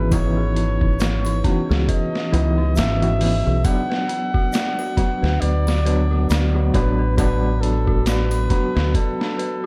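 Trip hop at 68 BPM with a swung sixteenth feel, smoky and dark, cut from a longer piece: a veiled, bucket-muted jazz trumpet carries the melody through 12-bit sampler grit and tape echo over an overdriven, reedy electric piano with tremolo and a C#m9 to D6 progression, while an eerie, warbling FM synth bell arpeggiates in the background with chorus, a round, punchy dub bass sits up front until 8.9 seconds, a pitched-down, compressed boom bap kit with a thumpy kick and high-tuned snare sits up front through analog delay, and a distant triangle and egg shaker add faint texture beneath light reverb and vinyl crackle.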